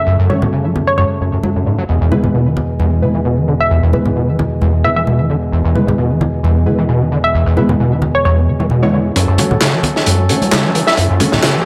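A dark, warm production with a small-room ambience frames this energetic, swaggering breakbeat excerpt at 132 BPM in F# minor, moving between F#m and E chords. A squelchy, distorted acid bass riff sits up front beside a hollow, bouncy square-wave pluck melody with chorus and delay, while a percussive tonewheel organ holds lightly overdriven, pumping chords, a bold orchestra-hit-like synth stab punches in with reverb and delay, and ringing, dry congas play throughout. At 9.2 seconds a build-up begins as a filter sweeps the stab and a crunchy, gritty breakbeat kit arrives with a very quiet fat analog bass, joined by background handclaps and a faint electronic riser near the end.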